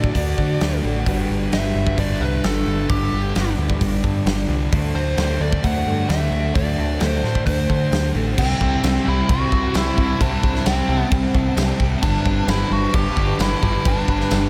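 A punchy, up-front rock drum kit with bright cymbals drives this hazy, dreamy shoegaze and dream pop excerpt at 131 BPM in C lydian, under a dark, round dub bass, a thick fuzz guitar riff and a raw overdriven garage riff with reverse reverb, while a nasal lead guitar with a parked wah and analog delay carries the melody. A shimmering, octave-doubled twelve-string acoustic picks arpeggios in the background until 8.4 s, when the chords move to C6, and a very quiet, jingly tambourine joins at 8.8 s. An icy, crystalline glass pad with a slow attack drifts in at 9.7 s, all of it soaked in huge ambient reverb.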